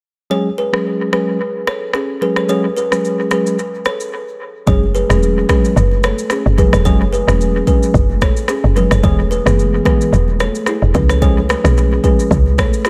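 A dry, echo-heavy mix gives this mellow, sultry afrobeats excerpt its character, with dub echo trailing the clean tine electric piano, the plucked, woody kalimba riff and the up-front, deep-kicked drum kit of rim click and shaker, whose tape-toned beat carries vintage 12-bit sampler grit. The groove sits on lightly swung sixteenths. After a short break at 4.1 seconds, a punchy, fast-attack log drum bass arrives up front at 4.7 seconds alongside very quiet, bright, high-tuned congas heard from a distance in a large room.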